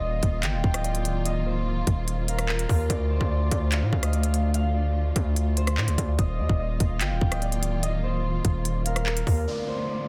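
A half-time drill groove at 146 BPM drives this tense, dark hip hop excerpt, with hard-clipped kick, crisp hats, handclaps and rim clicks up front beside a heavy, saturated 808-style bass, while a thumb-plucked concert harp carries the ringing melody through a low-pass filter over lush, woody bowed strings holding Ebsus2 and Dm chords, a soft, breathy flute-like synth lead with chorus and tape echo sits in the background, and a downlifter closes things out at 9.5 seconds in a dense, heavily limited digital space.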